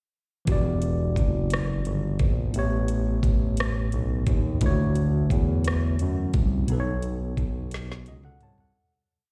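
At 0.5 s a worn, slightly out-of-tune tine electric piano, a saturated sawtooth synth bass and an electronic R&B drum kit begin together, setting a sultry, yearning slow six-eight R&B groove at 58 BPM in E dorian over Em9, A7, Dmaj7 and B7. Through a combo amp with slapback echo, the piano holds spread chords and adds grace notes and short fills. Beneath it, the up-front bass slides with portamento, vibrato and chromatic approach notes under a knocking kick, woody snare, metallic hats, rim clicks and toms, and the whole piece, heard as a live gig through the venue's PA with recital hall reverb, fades out from 6.7 s and closes on a drum fill at 7.7 s.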